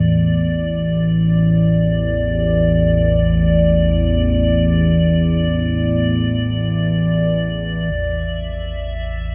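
An up-front analog drone of sawtooth and pulse-wave tones, mellow and evolving with a moving notch and chorus, anchors this dark, ominous dark ambient fragment in free time. Above it, an icy glass pad, crystalline and airy with a noise layer and its own reverb, fades in over the first 7.9 seconds. A filter sweep then reshapes the drone from 7.9 seconds, all within a vast, cathedral-like space whose long echo leaves the sound dim at the top.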